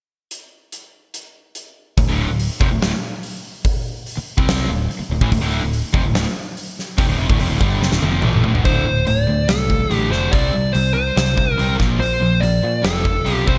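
Heavy and driving, this hard rock excerpt in D minor charges along at 144 BPM in a straight 4/4, with bright 1980s-style digital production. A huge arena drum kit opens alone at 0.3 seconds, its punchy kick and medium-tuned snare up front and drenched in gated reverb, with hi-hat and toms filling out the big-room sound. At 2.0 seconds the riff arrives over a Dm chord, carried by a cranked stack guitar, bright and overdriven with lush chorus, alongside an overdriven semi-hollow guitar that sits in the background with a hollow-body tone. A picked electric bass, direct and amped with a growly edge, anchors the low end beneath them. After a drum fill, a dark, smooth lead guitar steps up front at 8.7 seconds with an overdriven melody, as the harmony moves through D5, C5, Bb and F before the passage breaks off.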